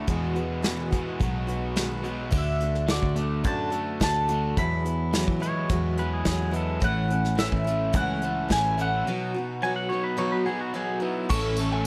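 Folk rock with a heartland rock flavor, this open-road excerpt moves at 107 BPM in a straight 4/4 feel in E mixolydian. A jumbo acoustic guitar with fresh strings, a double-tracked, crunchy overdriven electric riff, a dark, round, foam-muted bass and an up-front brushed kit with a tight kick carry the groove, while a double-strung mandolin enters with the melody at 2.4 seconds through an analog delay. A twangy, fingerpicked pedal steel adds a compressed second line with slide and volume swells from 5.4 seconds, and in the final moments a flute-like tonewheel organ with slow rotary speaker appears at 11.3 seconds beside a brief jingly tambourine, all sitting in light reverb.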